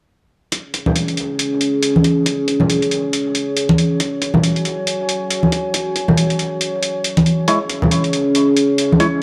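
Deep dubstep at 138 BPM in a half-time, swung feel, cavernous and meditative, where a dark, detuned analog pad with chorus holds sustained chords up front from 0.5 seconds over a knocking layered kick, a gritty pitched-down hi-hat and ringing, up-front congas, until a hollow, wave-folded organ stab with phaser and dub echo enters at 7.5 seconds on C#m, all in a dry, gritty recording with transformer saturation and light digital ambience.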